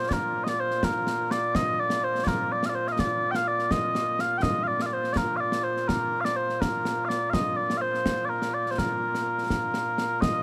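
Scottish traditional pipe music in 6/8 at 83 BPM in Bb major, this proud, stirring fragment of a longer piece sets mellow, sweet small bagpipes with a continuous, vibrato-touched solo melody up front over concert snare and bass drum with dark cymbals and a small-room acoustic character, all held in light reverb.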